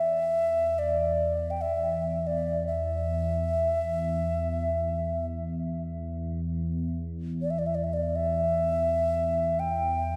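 World meditative music in free time and E minor pentatonic, tuned to A4 = 442 Hz, this spacious 10.2-second fragment of a longer piece sets a breathy, close-miked alto ocarina with a clay-like, straight tone and tape echo singing a melody between D5 and G5 over a deep, dark drone on E2 from a detuned sawtooth ambient pad with a sub octave, slow attack, chorus and its own reverb, the whole dreamy mix soaked in a lush hall reverb with a 2.5-second decay.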